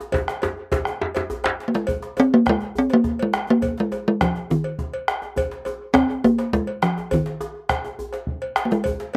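A tight, cracking djembe with metal rattles and slapback echo opens this earthy, festive excerpt of a West African drum ensemble in a straight 12/8, joined almost at once by a round, up-front bombo, a metallic cowbell with its own slapback echo, and a second, vintage-toned, band-limited djembe that plays until 1.6 seconds amid an opening drum fill, before a resonant talking drum, close and dry and placed up front, takes the melody from 1.7 seconds over the ongoing groove, all captured outdoors with a light reverb.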